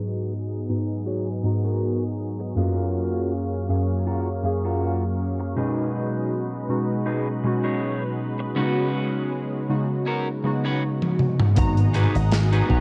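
Vaporwave, nostalgic and dreamy, in which warbly detuned synth keys, a lush chorused unison pad with vintage sampler grit and a twangy, slightly broken-up electric guitar riff drift through G#m7, F#maj7, B6 and C#7sus4 chords under a filter sweep before a big rock drum kit fill at 11.0 seconds ushers in a punchy slap bass with an envelope filter and a thumpy electronic kick at 11.6 seconds, all steeped in cassette-tape haze with light small-room reverb.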